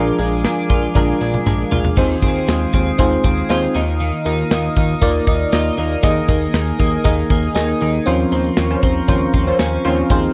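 A glassy, bell-like FM electric piano, a shimmering pulse-width pad, a bright, clean twelve-string electric guitar riff with chorus and tape echo, nasal funky polysynth stabs and a fat, detuned analog bass open this uplifting, romantic 1980s-style pop cut at 118 BPM. A punchy, polished drum kit with tambourine and toms joins at 0.1 seconds, and its fill at 1.0 seconds leads into a progression of chords over an Eb bass. The polysynth stabs return at 8.7 seconds for a closing band accent, all in a dry, close small-room sound.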